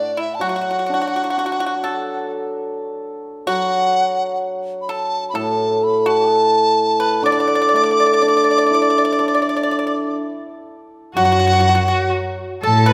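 A large dizi leads this short excerpt from a longer Chinese chamber piece, singing a hollow, pure melody with vibrato and the faint buzz of its membrane, placed up front. Beneath it a pipa, plucked with fingerpicks, adds a dry, percussive second line, while a hammered dulcimer supplies shimmering, ringing accompaniment in the lower register. The mood is pastoral and graceful, moving in a free, rubato 4/4 at around 63 BPM in a D gong mode. At 11.1 seconds a single distant erhu enters with a smooth, bright line full of portamento and vibrato, and at 11.2 seconds a dark, woody cello joins up front as the music shifts into a new section that runs to the end at 12.9 seconds. A generous scoring-stage reverb of about 2.0 seconds gives the ensemble a spacious, wet sound.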